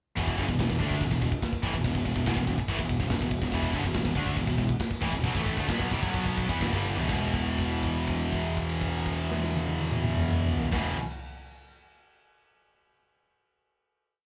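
A straight 4/4 heavy metal drive at 122-143 BPM in E minor carries three bright, distorted guitars (two high-gain, one of them scooped, and one double-tracked) through a power-chord riff over a growly fuzz bass doubling it in eighth notes and an up-front, tight-kicked drum kit in a big room, slowing from 3.5 seconds into a drum fill at 6.9 seconds before the band rings out on a held E5 chord from 7.1 seconds, a short, heavy and epic whole piece captured live with light reverb.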